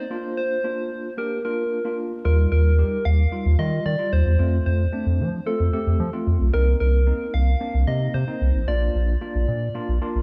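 A soft, struck synth lead and a clean tine electric piano open this summery, upbeat dance-pop excerpt together, at a straight 112 BPM in 4/4 and tuned to A4 = 441 Hz. The lead carries the melody with a gentle, keys-like FM tone that is bright yet vintage, its fast-attack notes decaying under chorus, vibrato and a digital delay that give it a warbling shimmer. The electric piano supplies the accompaniment, sounding as if heard through built-in speakers and sitting a little further back in the mix. At 2.2 seconds a round analog bass enters, deep, dark and slightly nasal, with sustained sine- and triangle-like notes pushed up front as the loudest part. The harmony moves through Bb, Ebadd9, F, Cm7 and back to Bb, all in a small, dry room with little reverb.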